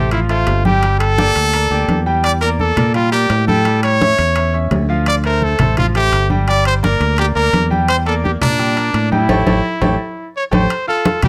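A punchy, bright trumpet leads this driving, passionate salsa excerpt in D minor at 170 BPM, carrying the melody up front over a brilliant grand piano with long sustain and a round, up-front fingered electric bass. Ringing congas played with soft hands and metal-shelled timbales sitting in the background join at 0.1 seconds, and the band hits an accent together from 9.3 to 10.7 seconds before settling on an Fadd9 chord. The sound is close and detailed with light reverb, and the chords cycle through Gm, Em7b5 and A7 around D minor.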